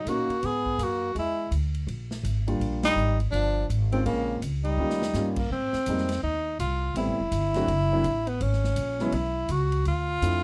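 Small-group swing and bop jazz at a brisk 165 BPM in 4/4, with a relaxed, swinging feel in Eb major, cut from a longer piece. A breathy tenor saxophone carries the melody up front, mellow and subtoned with light vibrato and scooped notes, while a clear, vintage-toned trombone plays a second line beneath it until 5.3 seconds. The upright bass is woody and growly, plucked with a thumpy, up-front presence throughout, and a grand piano adds intimate accompaniment with audible action noise, playing a brief touch at the start and then returning from 2.5 seconds. A swinging big-band drum kit sits low in the mix with an airy, polished hall sound, dark cymbals, a medium-tuned snare and a punchy kick, joining the band accent at 2.8 seconds and playing a fill just before the second section begins at 5.5 seconds. Light reverb gives the dark, warm production a gentle space as the harmony moves through rich seventh and extended chords.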